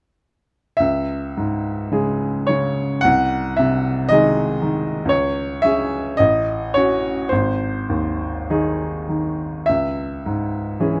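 Wistful and melancholic, this short passage cut from a longer piece is a romantic classical nocturne for solo piano in C# minor, moving slowly at around 50-60 BPM in 4/4 with a free, rubato feel. A bright upright piano carries everything on its own from 0.8 to 11.0 seconds, spanning G#1 to F#5. Its tone is brilliant and woody with a smooth, vintage character, and it sits up front in close, detailed microphones with a light touch of reverb. The harmony moves from C#m through G#/B#, back to C#m, then to F#m/A and G# before settling on C#m at 9.7 seconds.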